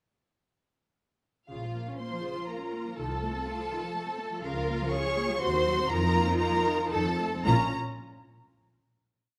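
This short, complete piece for string orchestra is a quick classical-period movement in triple time, dramatic and urgent, with a pliant, rubato feel. At 1.5 seconds the violins, violas and double basses enter together. The first violins carry the melody up front with a smooth, even vibrato, while the second violins double the tune at the octave and in unison with a soft attack and expressive shading. Beneath them the violas supply focused, flowing broken chords and sustained harmonies, and the woody double basses sit prominently on the beats, doubling the bass line. The cellos join at 2.0 seconds with an expressive counter-melody and sustained bass, adding a lush depth as the harmony moves through tense dominant and diminished colours before landing on a final minor chord, all set in a moderate recital-hall reverb.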